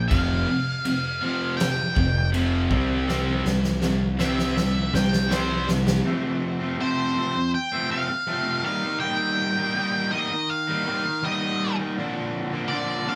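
Cathartic and anthemic, this quiet-loud alternative rock excerpt moves at 81 BPM in a straight 4/4 in F major, captured as a band playing live in one room with moderate studio reverb. An up-front, dark octave-fuzz lead guitar carries the melody and solos through the opening 6.1 seconds, while a bright, picked semi-hollow guitar drives its overdriven riff from start to finish. Beneath them, a heavy high-gain guitar adds a bright, distorted riff, and a punchy, fuzzed picked bass sits up front in the low end. A huge acoustic arena kit with a fat snare and punchy kick plays crash, kick and snare, rolling into a fill from 3.1 seconds. The high-gain guitar, bass and drums all drop out at 6.0 seconds, leaving the lead and semi-hollow guitars to carry the second section over chords moving from F through Eb to Bb.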